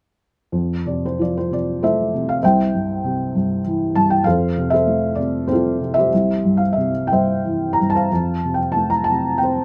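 A felt-muted upright piano carries this short classical excerpt alone, sounding soft, dark and boxy, with its action noise clearly audible and the instrument placed up front in an intimate, close-feeling space. The mood is sunny and warm, a lyrical piece in F major, tuned slightly low to A4 = 436 Hz. It moves in 3/4 at around 88-102 BPM, with a rubato feel that lets the time breathe. The piano plays from 0.5 to 9.6 seconds, spanning C2 up to Bb5, as the harmony alternates between F and C before settling back on F near 8.1 seconds. Light reverb surrounds the piano.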